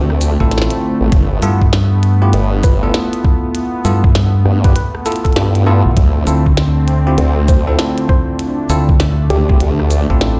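Glitch hop with a swaggering, playful swing, moving between Dm7 and G13 in this cut from a longer piece. A gritty, thumpy pitched-down kick sits up front with a saturated formant-sweep wobble bass and a dark, round fingered electric bass, while a glitchy overdriven kit of clicky hats, rim click, shaker and tiny snare crackles around them. A warm, smooth analog pad pumps with the sidechain, bell-like tine electric piano stabs ring with delay, and a mellow, woody wave-folded pluck melody hangs in the background, all played through a big sound system in a bare room with a large studio reverb.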